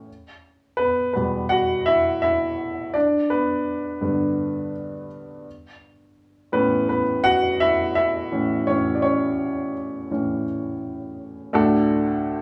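A short reverb and a studio room ambience frame this intimate, up-front pop excerpt at 84 BPM in a straight 4/4, tuned to A4 = 441 Hz. A lone upright piano carries the whole passage, its woody, natural tone with short sustain and audible action noise spanning D2 to F#5. From 0.1 seconds it moves through Em, G and A before landing on D at 11.5 seconds, giving the piece an uplifting, anthemic feel.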